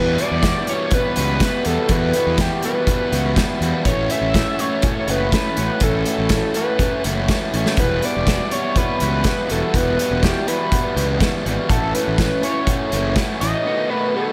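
A straight 4/4 pulse drives this restless, moody indie rock excerpt, set by a loose acoustic drum kit with a tight kick, medium-tuned snare and hi-hat that sits up front, its pumping small-room character arriving at 0.2 s. Over it, an overdriven synth lead screams a guitar-like melody, gritty and bright with vibrato and a sub octave beneath its sawtooth edge, treated with distortion, slapback echo and digital delay. Two guitars share the riff: an overdriven semi-hollow guitar, picked and hollow-bodied with spring reverb and slapback echo, and a slightly broken-up, lo-fi guitar through a small old amp, tucked in the background with analog chorus, slapback echo and digital delay. A fuzzed, fingered bass, dark, round and punchy, anchors the low end until bass and drums stop at 13.5 s, leaving the guitars and lead to carry on until 14.3 s. The harmony alternates Emadd9 and A6 before turning to B7, and a lush hall reverb gives the mix a big arena sound.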